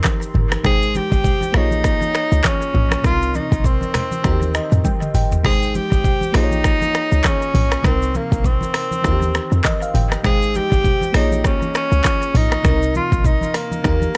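Afrobeats at 100 BPM in Bb dorian, with a mellow, sultry swing on the 16ths, this clip puts an up-front tenor saxophone in front, playing a smooth-topped jazz solo with vibrato and scooped notes bathed in dub echo, over a sparkling, bell-like FM electric piano with chorus and echo that adds fills at 4.2 and 9.3 seconds, an electronic drum kit with deep kick, dark hats, gritty 12-bit sampler texture and dub echo that fills at 4.8 seconds, a punchy, tight 808-style sine bass, and bright, low-tuned acoustic congas sitting in the background of a dry, echo-heavy mix.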